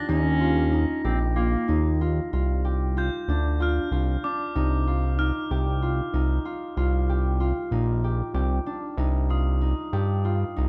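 In a straight, uneven 7/8, this urgent, hypnotic contemporary chamber piece sets ringing, mellow, fingerpicked harp arpeggios and shimmering, bell-like crotales over a fat, saturated, detuned sawtooth analog bass with a filter pluck, while a bright, vintage, classical-style clarinet carries a brief second line that stops at 2.0 seconds, within a dark production with light reverb as the harmony moves from Eb7 through G5/C and F5/C to Ebmaj7 and Cm.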